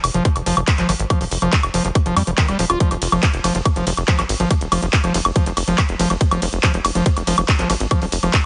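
A driving pulse at 141 BPM anchors this intense psychedelic trance excerpt in F minor, where an overdriven electronic kick sits up front from 0.3 seconds alongside a layered techno kit of handclaps, warm hats, ride cymbal and woodblock, while a tight, punchy sawtooth sequencer bass with a plucky filter runs low underneath, and a squelchy, gritty acid bass riff, resonant and distorted, pumps with sidechain and digital delay, all heard through light reverb and a heavily compressed, radio-like band-limited sound.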